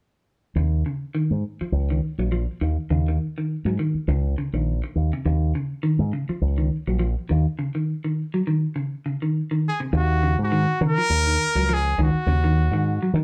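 A brilliant trumpet solo with light vibrato and scooped notes enters at 9.7 s, carrying a pop-style melody in this intense, defiant afrobeat piece at 102 BPM in Eb dorian, with a swung sixteenth-note feel. Beneath it, a fingered electric bass with an envelope filter sounds round and punchy, while a clean, picked electric guitar plays arpeggios, both up front from the start. After a break at 7.6 s, the harmony shifts from Eb7 to Ebm7 at 9.9 s, and the band plays live together in one room with moderate studio reverb.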